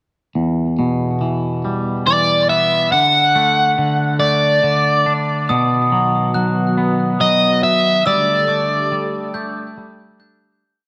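Post-rock in a slow, straight 6/8, cinematic and cathartic: a twangy, clean electric guitar picks arpeggios with phaser and tape echo from 0.4 seconds, a biting overdriven guitar carries an up-front motif-based melody from 2.1 seconds, and at 5.5 seconds a silky, detuned analog string pad with ensemble chorus and vibrato enters together with a bell-like glockenspiel ostinato played with soft plastic mallets. All of it sits in a moderate concert-hall reverb with a dark, warm production, moving through Em, D, B and Gsus2 before a fade-out from 8.1 seconds.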